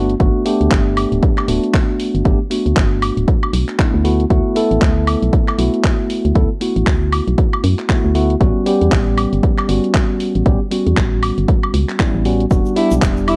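Deep and smooth, this swung deep house excerpt sets clean electric piano stabs, filtered and echoed with analog delay, over a hollow, dark, organ-like FM bass, both pumping to the sidechain, while a punchy, tape-warmed electronic kick and an overdriven kit of handclaps, hi-hat and woodblock carry gritty 12-bit sampler texture through Gmaj7, D69 and A13, until at 12.5 s a faint, airy acoustic kit of hi-hat and snare and a grainy egg shaker slip in under Em9 and a clear, soft-attacked alto saxophone sounds a lone E4 at 12.8 s, all in studio reverb.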